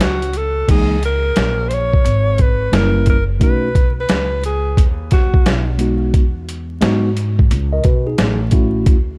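A swung 88 BPM boom bap groove in 4/4 drives this mellow, cool jazz-hop excerpt in C# dorian, where gritty, compressed sampler-style drums with a thumpy kick sit up front beside a woody, growly pizzicato upright bass, a breathy subtoned alto saxophone with vibrato and analog delay carries the melody until 5.8 seconds, and a clean tine electric piano enters at 0.7 seconds to comp through chords like C#m69, F#7b9 and Emaj7, all under a layer of vinyl crackle with little reverb.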